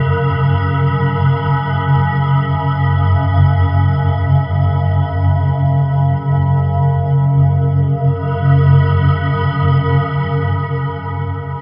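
In free time, this dark, unsettling ambient fragment from a longer piece rests on an F#5 chord, carried by a single swarming drone that plays alone from 0.0 to 10.7 s in a low register. The drone sits up front, its detuned, granular sine tone evolving with a moving notch, slow attack, and long release, colored by tape echo and its own reverb. A wet cathedral space with a long decay surrounds it, and the muffled top end keeps the sound heavy and shadowed.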